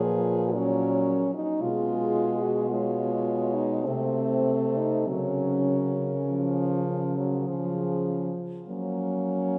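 Serene and lyrical, this short classical passage for horn quartet unfolds in a slow, rubato 3/4 at around 49-57 BPM in F# major, its chords moving from F#/A# through G#m/B and Cm6 to a close on F# at 8.7 seconds. A distant, roomy French horn carries the melody from the background while a second horn shapes the inner line up front, a soft-attacked third horn with light vibrato supplies accompaniment until 8.7 seconds, and a present, warm fourth horn holds the bass. A cathedral reverb with a 4.7-second decay gives the ensemble a spacious, wet glow, and the recording is cut from a longer piece.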